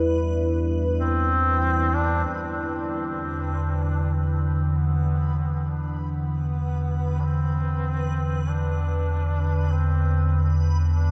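In a slow, straight 4/4 pulse, this cavernous, desolate dark ambient drone fragment rests on a mellow, warbling analog drone held up front, while a deep, moody detuned pad sustains dark chords until 2.3 seconds and a reversed, granular swelling texture glimmers far beneath. A vintage duduk enters at 1.0 seconds, its folk-style melody carrying vibrato and scooped notes through a delay, then fading in from 2.3 seconds as an eerie, inharmonic FM bell, barely audible, begins its arpeggios. The whole dreamy mix is soaked in a huge, long-tailed reverb.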